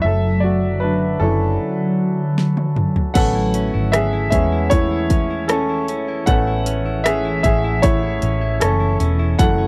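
This is a dry, close recording in a 1970s studio style, with the concert grand piano and drums placed up front. The piece is an emotional, hopeful pop ballad in a straight four, cut from a longer work, with the clear, open piano featured throughout. The piano's deep bass sits over a glassy, ethereal FM pad that holds mellow sustained chords with ensemble chorus and its own reverb, while a dark, round, foam-muted fingered electric bass anchors the low end. The harmony moves from Dmaj7/F# to Amaj7 as the second section opens at 3.2 seconds. The electronic, layered pop drum kit, with its punchy kick, fat snare and warm hats, enters at 2.4 seconds with a fill leading into that second section. Here a quiet, clean electric guitar, picked, recorded direct and compressed, adds arpeggios beneath the piano.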